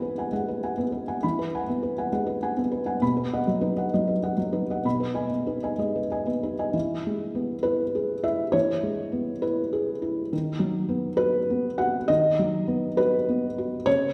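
Hopeful and peaceful, this short neoclassical minimalist passage, cut from a longer piece, gives a solo felt-muted upright piano a rubato 6/8 feel, its soft, dark, intimate tone and audible action noise sitting up front in the wet reverb of a church or concert hall, as chords opening on Eadd9 turn toward a new section at 6.7 seconds before ending at 14.1 seconds.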